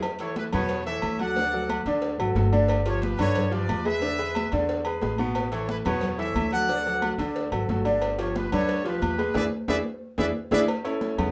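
A vibrato-laden trumpet section leads this sunny, danceable salsa excerpt up front, entering at 0.2 seconds over a brilliant, polished upright piano with long sustain and audible action noise, and a dark, growly pizzicato upright bass that joins at 0.5 seconds. Thin-skinned congas played with soft hands, ringing metal-shelled agogo bells and timbales, and a tight, high-tuned cowbell sitting distant in the background drive the cycling chords in a moderate studio ambience. A drum fill and band accent arrive at 9.4 seconds before the horns drop out and the passage breaks off mid-piece.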